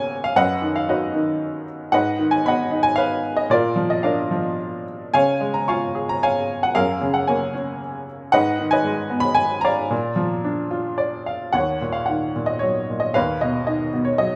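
Set in a rubato 3/4 at about 114 BPM, this short classical passage for solo piano unfolds lyrically in Eb minor, its mood cool and bittersweet. The upright piano carries everything on its own from the opening to 14.4 seconds, ranging from Eb2 up to Db6 with a brilliant, woody tone that sounds slightly detuned and natural, its short sustain keeping each note distinct. It sits up front in a recital hall with moderate reverb, giving the bright instrument a gentle sense of space. The harmony moves through chords such as Abm7, Gbadd9 and Bb before a brief piano fill at 10.7 seconds leads into a new section at 11.6 seconds, opening on Ebm7 and settling on B/D#. The passage is cut from a longer piece.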